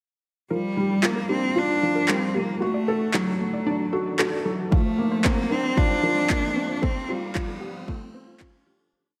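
Electronic handclaps set a restrained pulse from 1.0 s, and an overdriven, deep electronic kick joins at 4.7 s with a four-on-the-floor beat, both up front and roomy in this short, intimate and cinematic piano-and-strings electronica piece that builds throughout. A soft, felt-muted upright piano plays a mellow, short-sustained arpeggiated riff, while a barely audible sine sub bass holds sustained roots beneath the Gm7, D, Bbadd9 and Fadd9 progression. Close and focused, a single bowed cello carries a motif-based melody with vibrato. In the background, a warbly, dusty, lo-fi pluck with chorus, tape echo and sidechain pumping loops a 12-step arpeggio that drifts against the bar. A very quiet riser adds transition colour under a lush hall reverb, and the whole piece fades out from 6.1 s.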